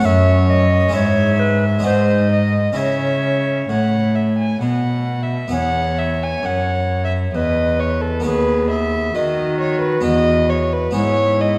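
A dark, softly reverberant concert-hall sound frames this serene, radiant baroque-style sonata movement at 66 BPM in 3/4, tuned to A4 = 436 Hz and cut from a longer piece, where an airy, woody tenor recorder carries the melody with a soft attack and straight tone, a gut-strung violin with light vibrato plays a second line, a brilliant, octave-strung harpsichord supplies plucked continuo accompaniment, and a rich, reedy cello holds the bass up front as the music moves from C# minor into E major at 5.5 s.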